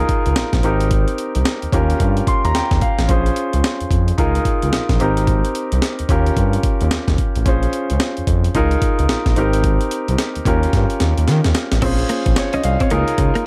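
Bouncy and flirty, this short new jack swing excerpt in Ab major moves at 110 BPM with a swung sixteenth-note feel, cycling through Db6/9, Abmaj7, Eb7 and Bbm7 chords in a dark production with light reverb. An up-front, clear concert grand piano with audible action noise and long sustain carries the accompaniment and plays a fill at 2.0 seconds, while a smooth, detuned synth bass glides with portamento beneath a gritty, pitched-up breakbeat kit whose thumpy kick and medium-tuned snare lead into a drum fill just before 11.8 seconds. At 11.8 seconds a clean, direct-recorded electric guitar enters with a short picked riff coloured by analog chorus.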